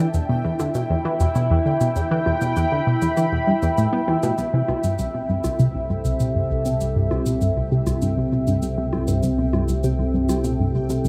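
Ambient, sequencer-driven space music at 99 BPM in 4/4, luminous and expansive, moving from an E minor chord to a C6 as the key settles into C major at 4.4 s. A tight, driving sequenced synth riff with a detuned sawtooth pluck, chorus, phaser and analog delay sits up front beside a bright, resonant pad of sustained chords with slow filter swells, while a pulsing, tempo-synced gated texture hovers in the background and electronic shaker and congas carry tape-warm analog delay. A warbling, vintage pulse-width drone bass enters at 5.4 s, and the whole is bathed in a huge, wet reverb with a dark production, with a fade-in on the synth texture and a filter sweep on the arpeggio sound from 4.4 s.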